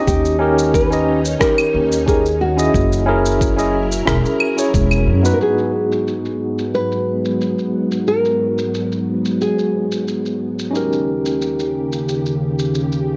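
Warm and smooth, this sunset chillout fragment cut from a longer piece moves at an easy, straight four-beat pace over chords from D#7 and F#7 to G#m7 and back to D#7. A classical nylon-string guitar, thumb-plucked and touched with tape echo, carries the melody until 10.4 seconds, while a clean tine electric piano sits up front with analog delay, heard through its built-in speakers. Beneath them a silky, warbling string machine holds long, slow-blooming chords with ensemble chorus, and a filter sweep runs across it from 5.4 seconds as the second section begins. A woody pizzicato upright bass anchors the opening and stops at 5.3 seconds, alongside a thumpy, overdriven electronic kick that drops out at 4.9 seconds. Sampler-style shaker, rim clicks and claves, gritty and low-pass filtered in a large room, continue through the whole passage, and the dry, gritty recording is finished with light reverb and digital ambience.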